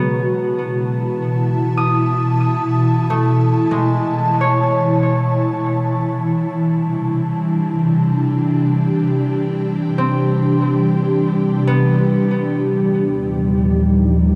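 An ethereal, airy pad leads this ambient passage in free time, holding sustained chords up front with a mellow, detuned shimmer from its ensemble chorus and built-in reverb. A concert harp rings through the whole stretch with bright, fingerpicked arpeggios carried on a delay, sitting lower in the mix than the pad. The harmony moves from Asus2 to Cadd9 at 5.7 seconds, then shifts to D#add9 at 12.4 seconds as a filter sweep passes over the pad. A deep, rumbling drone enters at 13.3 seconds on a low D#, its saturated, dark bass adding an ominous weight beneath the otherwise peaceful mood. The mix is dreamy and soaked in a huge reverb with a long 7.3-second tail, and the passage is cut from a longer piece.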